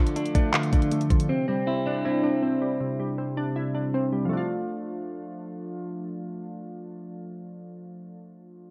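Melancholic and eerie, this short trap-leaning hip hop fragment sits in D minor at 159 BPM with a half-time feel, moving from Dm to Cadd9 and back to Dm. Glassy, wave-folded digital keys with chorus and a low-pass filter carry the accompaniment throughout, while a clean, hollow-bodied semi-hollow electric guitar plays filtered arpeggios through tape echo until 3.4 seconds, and a trap drum kit with a knocking kick, bright hi-hats and handclaps appears only briefly near the start. The whole clip has a worn cassette character, with warbly pitch drift and light reverb.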